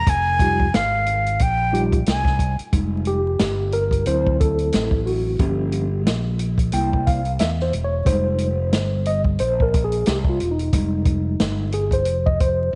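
A breathy, soft-attack concert flute opens this cool, mellow jazz-hop excerpt in F minor, playing a brief melody over a punchy fretless bass with lush chorus before falling silent at 2.6 s. An open, acoustic jazz kit with a boomy kick and medium-tuned snare brings a swung 90 BPM feel from 0.1 s. A mellow tine electric piano, heard through its built-in speakers, accompanies and then takes a clean solo from 2.7 s over Fm9, D7, Gm7b5 and C7 before returning to Fm9, all in light studio reverb with vinyl crackle and a muted top end.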